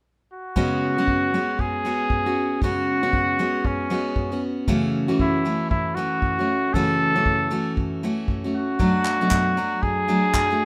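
Bathed in a moderate plate reverb, this wistful, reflective acoustic pop excerpt opens with a vintage-toned solo trumpet carrying the melody up front from 0.3 seconds, joined at 0.6 seconds by a full-bodied, picked dreadnought steel-string guitar and a small-room unplugged drum kit of handclaps and punchy kick, all moving in a lightly swung 4/4 over chords of C#7sus4, F#m7/C# and Bm7.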